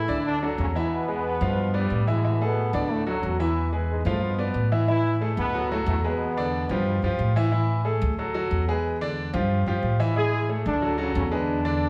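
Salsa at a brisk 182 BPM, joyful and danceable, in which a bright, punchy trombone section with light vibrato carries the melody from 0.0 to 7.0 seconds and returns at 10.2 seconds, over a clear, polished grand piano accompaniment and a woody, thumpy pizzicato upright bass, all up front in a large studio with a wet reverb as chords cycle around D, E, G7 and A before a lone Fmaj9/G colour at 9.5 seconds.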